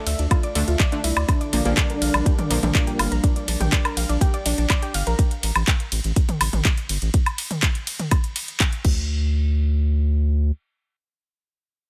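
A round, deep analog bass sits up front through this melancholic, cinematic melodic techno drop, pumping against a punchy electronic kick and a house drum kit with metallic hats, claps, toms, ride, crash and woodblock. Above them, a warbling, lo-fi pluck spins chorused, delayed arpeggios while a moody, detuned analog pad holds phased chords from Dmadd9 to Bb6 in the background. Fat, nasal synth brass plays a brief melody from 1.3 s alongside punchy brass stabs, all set in a digital ambience before the bass carries on alone to 10.5 s.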